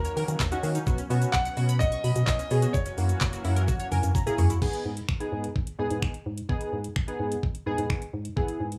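This dry, gritty recording carries a small-room ambience around a euphoric, summery dance-pop cut from a longer piece, moving at 128 BPM in a straight 4/4 through D#m7, Bsus2 and F#7 before landing on G#m at 4.6 seconds. A clear, intimate grand piano with audible action noise and tape echo carries the melody over a lush, warbling unison pad and a tight, detuned sequenced arpeggio, all three ending by 4.6 seconds. A hollow, organ-like FM bass, an up-front electronic R&B kit with knocking kick, woody snare and metallic hats, and round analog keys with chorus and a filter sweep carry on through the rest of the passage, the bass and keys pumping with the sidechain, with a synth-keys fill and a drum fill leading into the second half.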